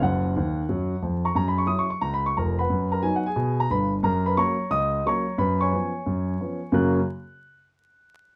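The first sound is a solo concert grand piano launching straight into swinging, exuberant stride jazz at 178 BPM in 4/4, with a 65% swing on the eighth notes, in F# major. Cut from a longer piece, this brief passage has the piano sitting up front with a deep bass and an open, long-sustaining tone, spanning from E#1 up to F#6. A quick piano fill runs from 0.3 to 1.3 seconds before the harmony moves through F#7, B over F#, and C#7 over F#, then settles back on F# at 6.7 seconds. The piano plays until 7.0 seconds. A moderate club ambience gives the room a short, lively tail, and a layer of vinyl crackle lends the sound an aged, record-player character.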